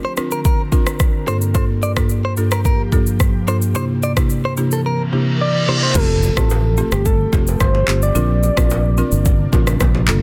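A straight 4/4 afrobeats groove from an electronic afro-pop kit, with a deep kick, handclaps, rim click, shaker, crash and a softly clipped snare, drives this breezy, romantic excerpt. A buzzing, woody marimba plays dark, dry accompaniment up front, while an ethereal, airy pad sustains chords in the background and a bright, clean guitar riff with tape echo runs until 5.8 s. From 5.4 s a round, FM struck synth lead with chorus and tape echo carries the melody. A reverse cymbal leads into an impact at 6.0 s, where a punchy fingered electric bass joins up front with vintage, band-limited congas and bongos behind it, all within a dense, heavily limited modern mix that has little reverb.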